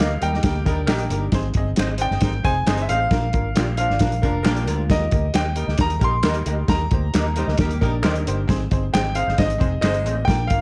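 Warm and uplifting, this short cut from a longer piece is uptempo 1960s-style soul at 134 BPM in 4/4 with a straight feel, sitting in Eb major and moving from Eb to Ab, Bb, back to Eb and then Ab. A muffled, gritty soul drum kit with a tight kick and a medium-tuned snare sits up front beside a round, punchy, foam-muted fingered electric bass, while distant finger snaps tick along in the background. A polished concert grand piano carries the melody high in its range with long sustain, supported by a woody, slightly detuned upright piano playing accompaniment. Behind them, a mellow electric guitar adds stabs through an ensemble chorus, a smooth-topped, tight saxophone section plays a second line in jazz style, and a clean, picked electric guitar with lush chorus plays a riff from 0.2 to 1.3 seconds and again from 4.2 to 8.5 seconds. The production is dark and warm, with light, small-room reverb.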